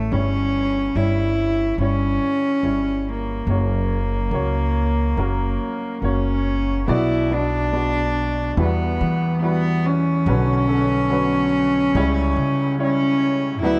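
A soft, bowed cello carries a pure, floating melody from the opening moment, its sul tasto tone sounding distant yet up front, over a worn, long-sustaining baby grand piano and a woody, plucked upright bass. This reflective, heartbroken folk-pop ballad moves at a slow 71 BPM in B minor, its harmony shifting from C#dim/G and F# to Bm, Emadd9 and Bmadd9 before settling on C#dim. A light reverb and a dark, warm production frame the fragment, which is cut from a longer piece and turns to a new section at 6.9 seconds.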